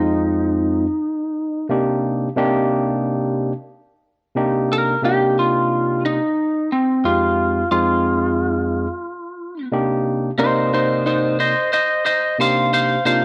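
Brooding and mournful, this blues fragment cut from a longer piece moves with a light swing as it shifts between Fm7 and Cm7. A slightly broken-up, compressed electric lead guitar carries the melody up front, picked with a warm edge. Beside it, a barky, clean tine electric piano played through a combo amp supplies the accompaniment, with moderate spring reverb lending the sound a dim, lingering space.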